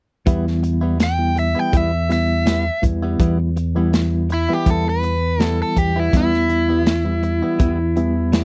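A straight-eighth soul blues groove at 82 BPM in 4/4, with a light swing on the sixteenths, sits firmly on E minor in this smoky, mournful clip cut from a longer piece. A crunchy breakbeat drum kit drives it from up front, its tight kick, medium-tuned snare and hi-hat sounding gritty and saturated with a rolled-off top, while a fingered electric bass holds a round, punchy low E. A reedy electric piano fills in the accompaniment through its built-in speakers, lightly overdriven and pulsing with a fast tremolo. A direct-recorded clean electric guitar adds bright, twangy, compressed stabs in the same register. From 1.0 seconds an overdriven electric guitar carries the picked melody, ranging from E4 up to G5 with a bright, compressed, up-front edge. The whole clip stays on a single E minor chord, captured as a dry, close 1970s-style studio recording with little reverb.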